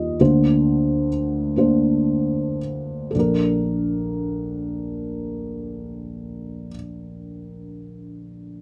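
A felt-muted upright piano plays alone throughout this short folk fragment in a straight 6/8, its dark, boxy tone and audible action noise sitting up front and close in a dry, detailed recording. The mood is hopeful and intimate, with the pace slowing over the opening 3.1 seconds before the music moves into a new passage on a gentle major-seventh chord.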